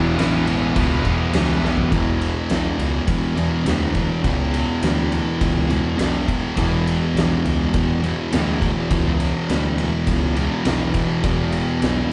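A straight, steady 4/4 pulse drives this ominous, sludgy stoner and doom metal excerpt, cut from a longer piece. A bright, overdriven, double-tracked electric guitar riffs over an Em chord for the opening 1.9 seconds, while two thick fuzz guitars churn out a low riff throughout, one up front and its twin sitting farther back. An oversized, low-tuned acoustic drum kit enters at 0.2 seconds, with a fat snare, punchy kick, crash, ride and toms, and plays a fill at 1.6 seconds just before the music settles onto a heavy E5 power chord. Beneath it all, a fingered electric bass growls in the background, amped and overdriven. The band sounds as if it is playing live in one room with light reverb, the drums carrying a stone-room brightness against the murky, rolled-off top end of the mix.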